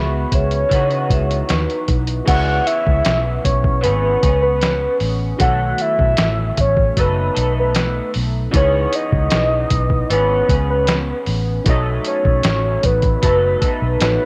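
Lonely and mellow, this excerpt of indie bedroom pop drifts at 77 BPM in 4/4 in C# minor, opening on C#m11 before moving between C#m7 and B7. A soft, octave-layered synth lead with a round, detuned tone and vibrato carries the melody over a slightly broken-up electric guitar through a small old amp with analog chorus and warbly pitch drift, a reedy, worn electric piano in the background, and a dark, foam-muted fingered bass up front. A ringing vibraphone struck with hard mallets sounds only in the first 2.0 seconds, while a muffled, thumpy lo-fi sampler-style kit of kick, snare, hi-hat and crash enters at 0.3 seconds, the whole mix sitting in a light reverb.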